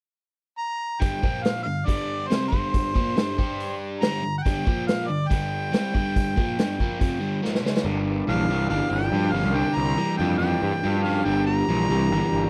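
A clear harmonica with light vibrato, overdrive and slapback echo carries the melody from 0.6 seconds in this heavy, gritty blues rock and southern rock excerpt in G minor at 140 BPM. At 1.0 seconds a crunchy, double-tracked overdriven guitar riff and a punchy vintage kit in a small pumping room join over G5, Bb5 and Gm chords. A drum fill ends the kit's part at 7.9 seconds, as a growly fuzz bass and a very quiet, mellow tonewheel organ with slow rotary arrive, followed soon after by a biting lead guitar in the background, all in a dry mix.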